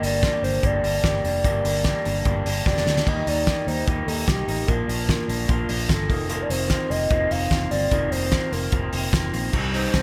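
This excerpt of jangly indie pop moves at a brisk, straight pace with a restless, bittersweet mood. A hollow, woody synth lead with a clarinet-like tone carries the melody, its soft, sustained notes thickened by chorus, vibrato and a slapback echo. Beneath it, two electric guitars through a small old amp share the accompaniment: one slightly broken-up and warm, bathed in spring reverb, while the other picks bright, twangy, lo-fi arpeggios. A dark, foam-muted fingered bass gives a round, punchy low end, and a loose acoustic drum kit sits up front with a fat snare, punchy kick and dark cymbals in a pumping studio room, including a quick fill from 2.7 to 3.1 seconds. The chords move from Gm through Eb and Bb to F7sus4, and a light reverb ties the parts together.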